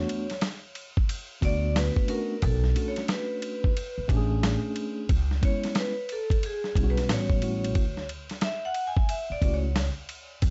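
Mellow and smoky, this short jazz-hop cut from a longer hip hop piece rolls along with a swung sixteenth-note feel in 4/4. A vibraphone played with hard mallets takes the solo throughout, its bright, metallic ring carrying slow motor vibrato and trailing tape echo. Beneath it, a tine electric piano heard through its built-in speakers lays down clean, warm chords moving from E7sus4 through Bm9, C#m7 and A13 to Dmaj9. A woody pizzicato upright bass with steel strings sits low and thumpy with tube saturation, while a compressed, gritty sampler-style soul drum kit enters at 0.1 seconds and sits up front with its kick, medium-tuned snare, hi-hat and ride. The room is dry, and the hardware recording carries vinyl crackle and a dull top end.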